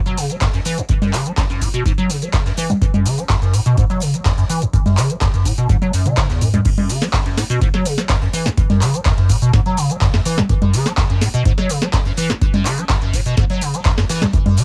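Acid house with a driving, trippy feel, built on a squelchy, resonant square-wave bass riff that sits up front, smoothed by phaser, ensemble chorus, tape echo and sidechain pumping. A booming analog drum machine with metallic hats, a tonal snare, handclaps, congas, toms and shaker plays alongside a deep, tape-warm electronic kick, while a very quiet gated 80s kit adds hi-hat and snare in a bright stone room. A drum fill at 5.7 seconds leads into the drop at 6.7 seconds, and the whole cut has the light reverb and character of a home cassette recording.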